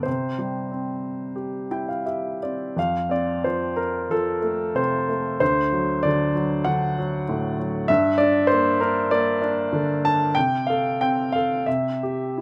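A clear, woody upright piano plays alone throughout this sunny, lyrical classical piece, cut from a longer work, in F major at a rubato 80-99 BPM in 4/4. After a short fill from 1.4 s, a new passage begins at 2.8 s, moving from F through D7 and Gm to Fadd9/C before settling on C. Close, detailed miking keeps the instrument intimate and up front, with the action noise audible, long sustain and a light touch of reverb.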